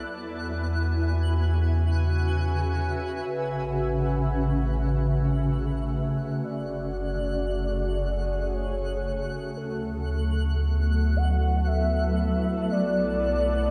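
A shimmering, ethereal pad with chorus holds sustained chords over a deep, round sub bass, while a twinkling granular texture sparkles high above, opening this luminous, serene ambient fragment in a slow 3/4. At 3.3 seconds a velvety synth lead with vibrato, portamento and tape echo fades in to carry the melody, and at 4.6 seconds a calm, warbling organ-like drone settles in the background. The echo-heavy mix has a cassette-tape character and a moderate plate reverb.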